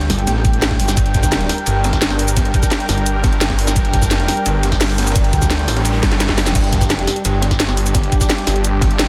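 Tense and mechanical, this dark technical drum and bass excerpt drives a snarling, detuned saw bass and an airy, sweeping resonant pad with chorus, all pumping against an overdriven knocking kick, an up-front layered kit with cracking snare and bright hats, a very quiet gritty breakbeat kit, and a deep, moody ambient pad in the background, while a metallic FM wobble bass bursts in briefly and a faint noise sweep from 5.6 seconds overlaps a drum fill at 6.0 seconds, all under a dense, heavily limited master.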